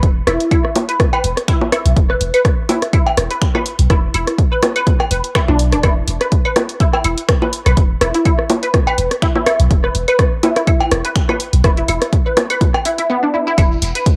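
A punchy sub bass with a pitch-drop attack, an up-front electronic kick and a tape-warm analog drum machine of finger snaps and hi-hat open this quirky, clinical minimal techno cut at 124 BPM with a 16th-note swing. They are joined by a squelchy resonant blip pluck riff in B3 to B4 with phaser, chorus, tape echo and sidechain pumping, and by electronic rim click, claves, bongos and cowbell, before a grainy, distant shekere slips in at 13.6 seconds, all in a lightly reverberant cassette home recording.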